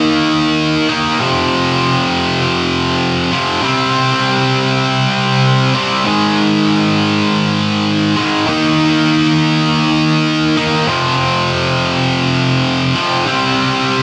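A heavy, high-gain electric guitar carries this short rock excerpt alone from 0.0 to 14.0 seconds, its bright, distorted tone double-tracked and placed up front. The mood is heavy and aggressive, moving at 99 BPM in a straight 4/4 feel in F minor. Picked parts range from F2 up to Eb4, built on power chords that move from Eb5 through F5, C5 and Ab5 before circling back. A moderate studio reverb gives the guitar some room, while heavy compression lends the whole a dense, radio-ready punch. Cut from a longer piece, the passage feels like a single section caught mid-stride.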